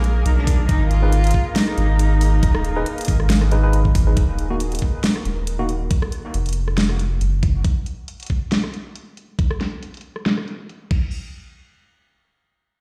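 The recording rings out through a bare stone room as if played on a big sound system, lending this brooding, meditative slice of deep dubstep a cavernous weight at 138 BPM in a swung, half-time feel. A deep, round sub bass made from triangle and square waves sits up front beside an overdriven, knocking electronic kick that enters at 0.5 seconds, while the overdriven dubstep kit brings a huge snare, hi-hat, rim click and crash, with its hats, snare and cymbals passed through a low-pass filter. Far back, a moody, detuned sawtooth pad with a sub octave and ring modulation holds sustained chords under chorus and reverb, joined by a reversed, granular swelling texture that drops out at 4.2 seconds. A lone bowed cello, dark and boxy with smooth vibrato, carries the melody through dub echo, and a worn, slightly out-of-tune tine electric piano adds stabs through a combo amp with echo of its own. 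The harmony moves from Abm to Eb5, a filter sweep works over the drums and pad, and the drums carry on alone until the chords drop away near 10.9 seconds.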